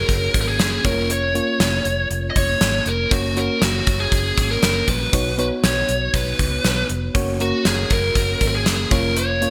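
An overdriven, biting lead guitar carries the melody up front from the first moment, over a mellow FM electric piano with a warbling chorus shimmer and a dark, foam-muted fingered bass, with a gated drum kit of punchy kick, medium-tuned snare and hi-hat joining at 0.1 seconds. This glossy, nostalgic 1980s-style pop fragment moves at a steady, straight pulse through a chord cycle that returns to its home chord and passes through an add9 colour. The polished digital production is bright, and a lush hall reverb and airy gated room wrap the parts in studio ambience.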